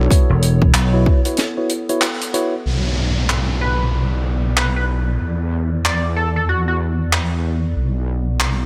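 A heavy, saturated wobble bass drives this swaggering, playful glitch hop excerpt in B minor at 94 BPM with a 16th-note swing, joined by a punchy layered electronic kick until 1.2 seconds, a studio drum kit of handclaps, hi-hat and a medium-tuned snare, a brief amped slap bass, gritty sidechain-pumped tine electric piano stabs, a lo-fi warbling tape-like pad in the background, a downlifter and riser from 2.7 seconds, and an edgy, tearing sync lead with vibrato and tape echo from 3.6 to 6.8 seconds over chords moving from F#7sus4 to Bm7 and E5.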